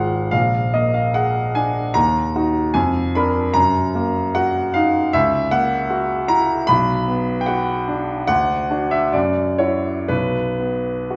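A bright grand piano, placed up front and carrying a brilliant, open tone with long sustain, plays alone throughout this short romantic character piece cut from a longer work. The mood is passionate and brooding, set in E-flat minor and moving in 2/4 with a flexible rubato feel that drifts between 59 and 79 BPM. The harmony opens on a dominant seventh before settling into E-flat minor, then wanders into darker, more distant territory through F-sharp seventh, B minor and a D chord with an added ninth. The playing spans from deep in the bass up into the high treble, giving the piano a full, ringing presence. A wet recital hall reverb surrounds the sound, lending it a sense of space before the passage breaks off at 11.2 seconds.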